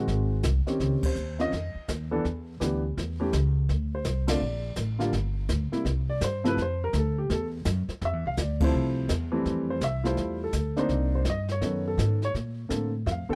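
A dry, close 1970s-style studio sound frames this swinging, sophisticated jazz piano trio clip in F major at 166 BPM, with a lilting swing feel in 4/4. An up-front baby grand carries the melody in a natural, warm tone over woody, growly pizzicato upright bass, while a brushed drum kit adds dark cymbals, a medium-tuned snare and a boomy kick. The trio punches out accents at 1.0, 4.2 and 8.6 seconds, moving through colorful harmony from Ab7 and Dbmaj9 toward Fmaj7, before the piano takes a solo at 9.5 seconds over Fmaj9, Cm9, B9 and Bbmaj9.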